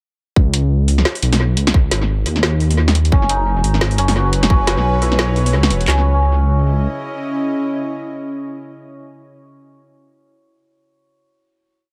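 Spacious and tense, this short half-time drum and bass piece is built on a swung, echo-heavy mix with light reverb. From 0.4 seconds a dark, detuned saw bass rumbles up front with deep, beating, saturated tone and long gliding notes, while a layered electronic kit drives a half-time pattern of tight kick, woody snare and handclaps. A second kit layer adds a sparse beat of snare and metallic hi-hats, treated with analog delay. A bright, hammered santur joins at 3.1 seconds, repeating a shimmering, ringing sixteen-step arpeggio through its own analog delay. A string-like, bowed-sounding drone enters at 4.2 seconds with slow attack, vibrato, a noise layer and sidechain pumping, its slowly shifting chords carrying through the final held chord after the drums and bass fall away.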